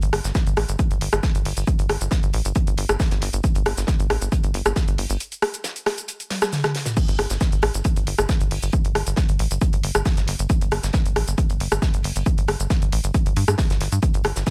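A tight, punchy sequencer bass anchors this dark, intense stretch of driving peak-time techno, cut from a longer track. Its sawtooth and square-wave tone has a fast-attack filter pluck and a moving notch, and it pumps against the sidechain. A dry, mid-forward 70s-style acoustic kit sits low in the mix, its hi-hat and fat snare thinned by high-pass filtering. Alongside it, a layered, overdriven techno kit of crash cymbal, hi-hat, rim click, shaker and toms sits up front, with its hats, percussion, toms and cymbals pumping to the sidechain. A heavy, overdriven electronic kick lands at 0.3 seconds as the loudest drum element, and a break from 5.2 to 7.0 seconds ends in a drum fill before the groove drives on. The room is nearly free of reverb, giving the mix a hard, immediate edge.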